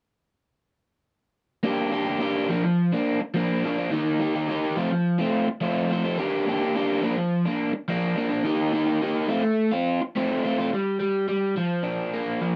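A bright, crunchy overdriven electric guitar, picked and double-tracked up front, carries this restless, bittersweet rock fragment alone from 1.6 s, cycling twice through Gm, Bb, Eb and F before a brief chordless passage at 10.7 s that gives way to Bb, all captured in a dry, close 1970s-style studio sound with a modest small-room ambience.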